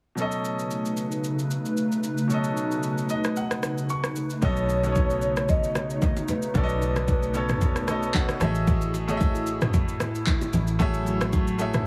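The bright, brilliant grand piano sits up front in this soulful, late-night amapiano excerpt at 113 BPM, voicing chords from B9 and adding fills while a hollow, flute-like pad with ensemble chorus and sidechain pumping sustains beneath it and a deep house kit of deep kick, handclaps, rim click, shaker and toms drives the swung 16ths. At 4.4 seconds a foam-muted fingered electric bass and saturated congas and bongos in the background join, along with a woody, clarinet-like synth lead treated with chorus, phaser, vibrato and digital delay that carries the melody until 8.4 seconds, when the harmony moves to F#m9/A. The sound is dry and heavily compressed, with a radio-like character.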